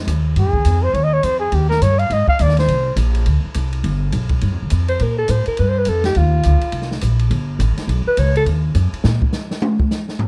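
A dark, dry, close-sounding fragment of late-night, smoky small-group swing and bop at 207 BPM settling into G minor, where a woody pizzicato upright bass with gut strings thumps up front under an acoustic kit with dark cymbals and a boomy kick, a breathy trumpet with light vibrato takes a brief solo from 0.4 seconds, a clear alto saxophone with subtone and scooped notes follows from 4.9 seconds, and the drums close with a short solo at 9.1 seconds.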